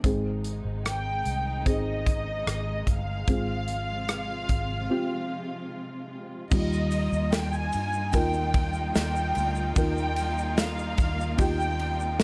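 A punchy, airy acoustic drum kit anchors this longing, emotional pop ballad at 74 BPM, where a dark, woody violin section carries the vibrato-rich melody from 0.9 seconds over mellow felt-muted upright piano, a round, foam-muted electric bass and lush symphonic strings with expressive portamento, moving from Ab through Fm/Ab into a break at 4.9 seconds before a grainy tube shaker slips in behind at 6.5 seconds on Ebadd9, all in light reverb, in this fragment cut from a longer piece.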